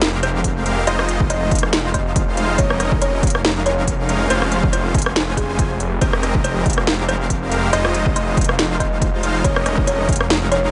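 Dreamy and bittersweet, this future bass excerpt moves at 140 BPM in a half-time 4/4 feel with a light swing on the sixteenths, set in F minor. Huge, bright supersaw chords carry the riff through the whole passage, sustained and pumping against the sidechain as the harmony cycles through Abmaj9/F, Fm7, Eb7sus4/F and Dbmaj7/F. Beneath them a thick, detuned saw bass holds a low F1, thickened with chorus and pumping in the same way. A trap kit with a sharp snare, crisp hats and rim clicks sits up front with a tape-warm edge, joined at 0.4 seconds by a punchy, layered electronic kick. From 0.2 seconds a woody kalimba plucks short notes between Ab4 and Eb5 in the background, its dub echo trailing behind. The mix is dry and close, with the top end rolled off above 10.6 kHz, and the clip is cut from a longer piece.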